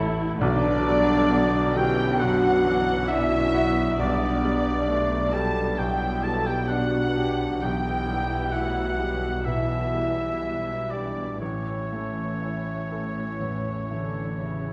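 Longing and bittersweet, this cinematic orchestral film-score fragment unfolds with a loose, rubato pulse in 4/4, cut from a longer piece. Muted violins carry the veiled, con sordino melody high up, joined by a clear, present oboe and a second, lush violin line. A dark, distant clarinet adds a very quiet solo line beneath, while a mellow French horn section holds soft sustained chords. A bright concert grand piano with deep bass, muted violas and cellos, a softly bowed double bass section and a ringing, fingerpicked harp playing arpeggios fill out the accompaniment, with round, dry timpani strokes heard only from 0.4 to 1.7 seconds. The harmony moves through Bm, G/B, Em/B and A, and a wet scoring-stage reverb gives the strings and winds a spacious, cinematic sheen.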